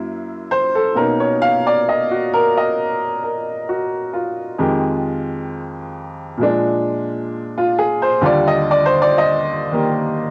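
Solo jazz at a slow 66 BPM in 4/4 with a swung eighth-note feel, this brief excerpt cut from a longer piece carries a warm, sophisticated mood. A bright upright piano plays alone throughout, its woody, brilliant tone sitting up front and open, ranging from Eb2 to F5 through a progression of Gb7, Bmaj9, Fm9 and Bb7 before settling on Ebmaj9 at 8.2 seconds. The home cassette recording lends the piano a tape-worn character, framed by a short, moderate booth ambience and tuned slightly sharp at A4 = 441 Hz.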